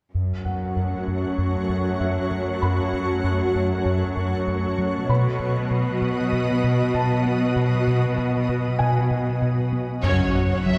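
Heard from further back in a wet scoring-stage space, this tense, brooding cinematic excerpt in F# dorian moves at 97 BPM over F#m and B chords. It is built on a round, deep analog bass riff and a rich, bowed cello section up front, while a shimmering, ethereal ambient pad carries sustained chords through chorus and its own reverb, and a felt-muted upright piano adds soft, intimate texture through a delay. At 10.0 seconds the ensemble accents an F#5 chord with an electronic impact: an expressive violin section with vibrato takes the melody, a dark violin section plays a second line, a clear viola section and a very quiet, mellow French horn section hold the middle, and a double bass section sits on a low F#1.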